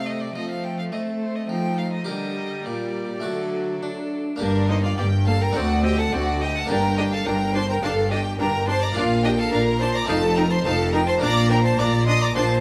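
Baroque-style classical concerto movement in G minor, cut from a longer piece, driving and stormy at 106 BPM in a straight 4/4, where a clear solo violin with a focused, distant tone carries the melody alongside a smooth, even violin section, while a rich second violin section, bowed violas and a lush symphonic cello section supply the inner lines and bass. A bright, plucked harpsichord fills out the accompaniment, and an intense, distant double bass section joins at 4.4 s as the music moves from a tense diminished opening through Gm and D toward Bb and F. The strings sing with vibrato in a moderate recital-hall reverb.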